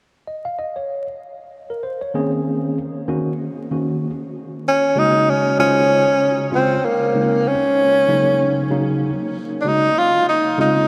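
A lazy swing on the sixteenth notes gives this short hip hop cut, taken from a longer piece, a loose, head-nodding 4/4 pulse, and its mood is nocturnal and smoky. A worn, slightly out-of-tune tine electric piano carries the accompaniment from 0.3 seconds, its mellow tone lightly overdriven as if heard through built-in speakers and placed up front. At 4.7 seconds a breathy tenor saxophone takes the solo melody in a jazz style, with subtone, vibrato and scooped notes giving it an intimate, husky voice, colored by tape echo. The harmony drifts through soft minor-eleventh, suspended and major-seventh chords such as Bbm11, Ab9sus4 and Dbmaj7. The whole mix is dreamy and soaked in a huge ambient reverb with a long tail, and a layer of vinyl crackle adds a dusty, late-night haze.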